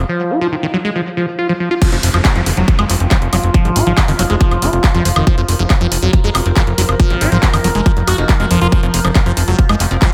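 A tight, up-front electronic kick drives this excerpt of psychedelic trance at 139 BPM in F phrygian, landing with the drop at 1.8 seconds alongside a layered drum kit of crisp hi-hats, handclaps, woodblock and crash cymbal, both given a small-room character. Underneath, a punchy, funky analog bass plucks low with ring-modulated sawtooth and square tones, while a squelchy liquid acid bass riff, saturated and resonant with filter sweeps, runs through phaser and tape echo and pumps with sidechain compression. A slow-blooming drone holds sustained chords throughout, its moving sawtooth and sine overtones thickened by chorus, phaser, reverb, gritty 12-bit sampler texture and sidechain pumping. After a brief blip at the very start, a very quiet, juicy blip pluck returns at 3.0 seconds to add a bright, evolving second line, and an electronic downlifter sits in the background until 5.3 seconds. 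The mood is driving and psychedelic, with light reverb around the mix.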